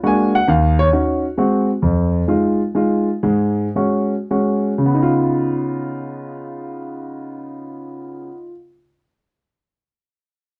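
A grand piano plays alone throughout this short jazz excerpt, its tone natural and warm, with long sustain and a close, up-front presence. The mood is sophisticated and warm, set in a lilting three-beat waltz with a swung eighth-note feel. The piano covers a broad range from deep bass notes to bright upper tones, moving through rich extended harmony: an augmented chord opens the passage, and a Db9 arrives at 4.9 seconds. Between 1.8 and 4.9 seconds the pace slows. The sound is dark and warm, with moderate studio reverb giving the piano a gentle sense of space.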